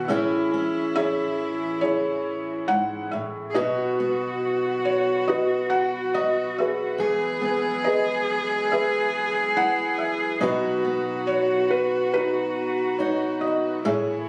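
Captured on a phone in the room, this short cut from a longer acoustic folk-pop ballad has a compressed, reverberant sound with a moderate large-studio tail. A soft, felt-muted upright piano carries the tender melody up front, joined by a close, bowed cello playing sul tasto with light vibrato as a second line, while a fingerpicked steel-string acoustic guitar supplies the accompaniment. Behind them, a very quiet symphonic string section holds pure, floating sustained chords over an Amaj7, B, Emaj7, B progression, giving the piece an intimate glow.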